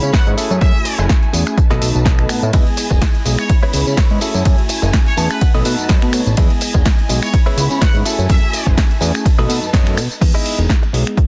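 Dense, heavily limited and dry, this funky, sunny filtered disco house excerpt is built on an overdriven, up-front electronic kick and a punchy analog drum machine with snare, hi-hat, ride, crash, finger snaps and tambourine, with a very quiet, close acoustic tambourine part joining at 2.5 seconds, while a fat, saturated sawtooth bass, a bell-like tine electric piano through a phaser, veiled con sordino strings with 12-bit grit, a brilliant straight-muted trumpet section with delay, and a twangy direct-recorded clean guitar that plays a fill at 4.9 seconds all pump under sidechain and sit behind a low-pass filter until a filter sweep arrives at 10.2 seconds.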